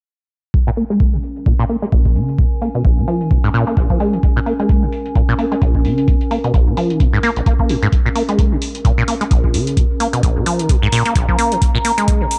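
Deep, overdriven analog kick and quieter metallic hats open at 0.5 s under a filter sweep, joined at 0.7 s by an up-front, squelchy, resonant sawtooth acid bass riff with tube saturation, cassette grit and analog delay, also filter-swept, and at 1.2 s by a warbling, nostalgic square-and-triangle pad, dark and lo-fi with chorus and sidechain pumping, in a raw, driving 130 BPM acid house excerpt in Bb minor over a swung Bbm7 groove with a dry, gritty hardware sound.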